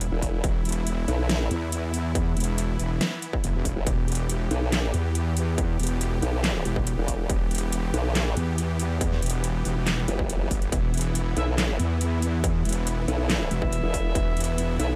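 A half-time 4/4 groove at 140 BPM drives this menacing, aggressive slice of heavy wobble dubstep in E minor, with a distorted electronic kick and an up-front dubstep kit of huge snare, metallic hi-hats and handclaps. Two saturated, chorused wobble basses dominate the low end, one a resonant sawtooth-and-sine unison and the other a pulse-wave patch shaped by a formant filter, while lush, detuned supersaw chords sit behind them, bright and airy, pumping under sidechain. At 11.4 seconds a brass ensemble with light vibrato and a smooth top adds classical-style stabs through a digital delay, all in a dry room with little reverb.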